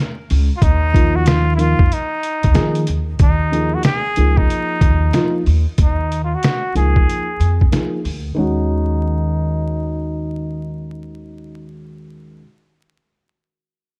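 Dark, crackling vinyl haze and a small-room ambience frame this mellow, nocturnal jazz-hop excerpt in Eb minor, moving at 93 BPM with a swung 16th-note feel. Up front, a gritty, compressed, pitched-down sampler-style drum kit with a thumpy kick and medium-tuned snare pairs with woody pizzicato upright bass, while a slightly detuned vintage upright piano, its action noise audible, pads the harmony through a low-pass filter. A close-miked trumpet with a straight mute floats a nasal, breathy, whispered solo line with light vibrato, and the drums drop out at 8.2 s as the chords settle from suspended shapes onto Eb minor.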